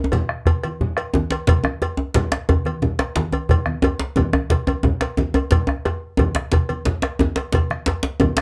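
A close, small-room sound with moderate reverb frames this festive, driving West African drum ensemble excerpt in 12/8 at 119 BPM, where a deep, hard-handed djembe sits up front beside a round bombo, a second tight, cracking djembe played with soft hands stays in the background, compressed and saturated congas offer a bright, thin-skinned yet low-tuned tone, and a dry, metallic cowbell rings through, the whole ensemble playing from the opening moments to 8.4 seconds.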